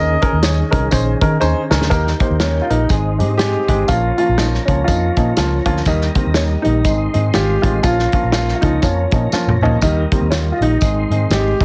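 A dark, round, foam-muted electric bass sits up front in this joyful, uptempo 1960s-style soul excerpt, its amped tone punchy and driving the 121 BPM swung 4/4 groove in E-flat mixolydian. A grand piano carries the melody with an intimate, natural touch, its short sustain and audible action noise adding a close, human quality. Beside it, a woody upright piano plays accompaniment up front, bathed in plate reverb, and adds a fill from 1.2 seconds that leads into the change at 1.9 seconds, where the opening suspended chord gives way to a cycle of E-flat, A-flat and B-flat minor. An acoustic drum kit with a punchy kick and medium-tuned snare comes in at 0.2 seconds, playing hi-hat, snare, toms and kick with a small-room feel, and plays fills, including one at 9.3 seconds. A smooth, clean tonewheel organ holds sustained chords in the background through a slow rotary speaker with chorus vibrato and a touch of key click, while a close, jingly tambourine adds percussion. 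The whole mix has light reverb and a heavily compressed, radio-like sound that keeps it warm and punchy.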